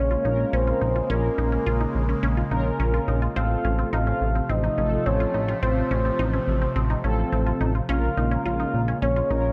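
A light reverb and an echo-heavy mix give this cool, nocturnal pop excerpt a misty sheen, with a glossy, retro synth bass sitting up front beneath a soft, octave-layered lead that carries the melody in a round, dark tone touched by tremolo, vibrato and analog delay. Around them, a bright, resonant pad moves through slow-swelling, evolving chords under a phaser, while a juicy, squelchy blip pluck spins short arpeggios through its own delay. Mellow synth brass enters at 0.2 s with brassy, detuned accompaniment over the shift from Bbm7 to F/A and back.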